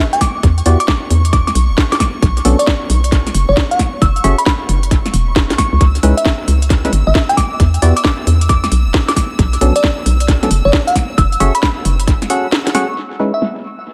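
A bell-like FM electric piano opens this moody, bouncy two-step garage excerpt, carrying a sparkling melody through chorus and tape echo while a clear studio violin section holds sustained chords in the background, its light vibrato shaded by a low-pass filter and sidechain pumping. At 134 BPM with a swung sixteenth-note feel in C# phrygian, a garage drum kit with a cracking snare and crisp hats enters with a tight, up-front electronic kick, both tape-warm and re-recorded in a large room. A hollow, knocking FM bass sits up front with a punchy, fast attack that then decays, and a percussive, organ-like stab arrives at 0.7 seconds, colored by chorus and dub echo. The harmony cycles through Em9, Bm9, F#m9 and C#m9, and the kick drops out between 12.5 and 13.0 seconds near the close. The mix is echo-heavy with light reverb, giving the mellow parts a dusky, spacious sheen.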